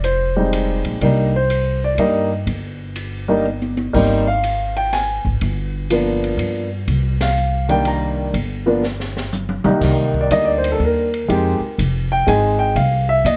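Lightly reverberant, this smoky, cool 13-second jazz piano trio excerpt in C minor swings in 3/4 at 123 BPM, with a polished, up-front grand piano carrying the melody through plate reverb, a woody, thumpy pizzicato upright bass underneath, and an open acoustic kit with a high-tuned snare and boomy kick adding a fill at 3.5 seconds and a lead-in to the piano solo that begins at 9.8 seconds, while the whole band hits an accent at 7.1 seconds.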